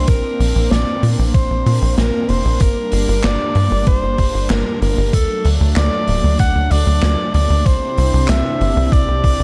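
A smooth-topped alto saxophone with vibrato and delay sings a classical-style solo over this driving, nocturnal synthwave excerpt at 95 BPM in G dorian, backed by a detuned, chorused sawtooth pad and a tight, punchy sequencer bass with a filter pluck, both pumping with sidechain, while from 0.1 s an overdriven, thumpy electronic kick plays alongside a gritty, saturated garage kit of snare, hi-hat and handclaps in a bright stone room, as the chords move through Bbadd9, Gm, D and Cadd9 in a dark, warm production.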